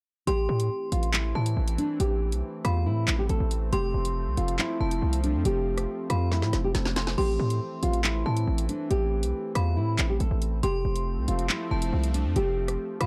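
Dark and menacing, this half-time drill cut from a longer hip hop piece moves at 139 BPM in A minor, with a full-bodied, fingerpicked nylon-string guitar carrying the melody through a low-pass filter while a metallic, inharmonic FM bell rings a high second line through chorus and tape echo. Beneath them, a detuned sawtooth pad with chorus holds evolving sustained chords over Am and F, and a punchy, heavy 808-style bass sits up front, its sine tone edged with a noise layer. The electronic drill kit brings a woody snare, metallic hi-hats, rim clicks, handclaps and crash cymbal, with a drum fill from 6.3 to 7.2 seconds, all in a dry, dark production.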